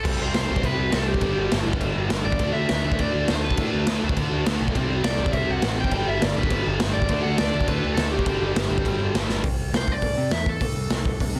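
An upbeat, rowdy punk rock excerpt opens with a crunchy overdriven guitar carrying the melody over three riffing guitars: a very quiet, bright, compressed distorted one, an overdriven hollow-body one in the background, and a double-tracked, scooped high-gain one, joined by a growling, punchy picked bass. A raw garage drum kit enters up front at 0.1 s, with a boomy kick, dark cymbals and a gritty, pumping small-room sound. After a drum fill at 9.3 s the three riff guitars stop at 9.4 s, leaving the lead guitar, bass and drums to close the dense, heavily limited, nearly dry mix.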